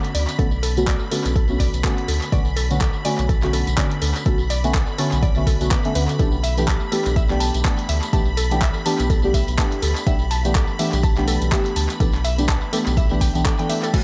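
Deep house at 124 BPM with a swung, warm and smooth feel, cut from a longer piece, where dark, wave-folded chord stabs sit up front with chorus, phaser, tape echo and sidechain pumping over Bm9 moving to G69/B at 6.2 seconds, a round, tube-saturated analog bass pumps beneath a deep, tape-warm electronic kick entering at 0.4 seconds and a layered kit of crash, handclaps, hi-hat and tambourine with tape echo, while a shimmering vintage string machine of violins adds ensemble-chorused texture high above and a woody, ring-modulated FM mallet pluck arpeggiates in the background through cassette tape and echo, all in an echo-heavy mix with light reverb.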